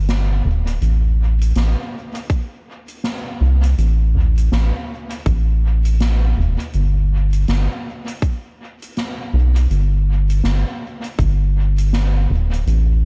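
A dry ambient dub excerpt at 81 BPM in 4/4, with 60% swing on the sixteenths and tuning at A4 = 441 Hz, carries a hazy, deep mood. A round, nasal analog bass sits up front from the start, spanning D1 to C2, while a soft-mallet drum kit of hi-hat, fat snare and toms sounds acoustic and natural under a dub echo. A tight, produced electronic kick joins at 2.3 seconds and drops out at 11.4 seconds.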